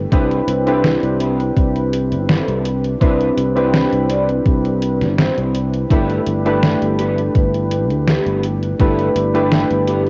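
A straight 4/4 pulse from a thumpy, tape-warm electronic kick (which drops out at 8.9 s) and a detuned 8-bit drum machine's hi-hat and snare carries this woozy, dreamy vaporwave fragment, where warbly, lush-chorused lo-fi synth keys drift from Cmaj7 to G69 over a growly, up-front fretless bass, while a dark, slightly broken-up electric guitar riff with gritty sampler texture and analog delay sits in the background of a home-cassette recording with light digital reverb.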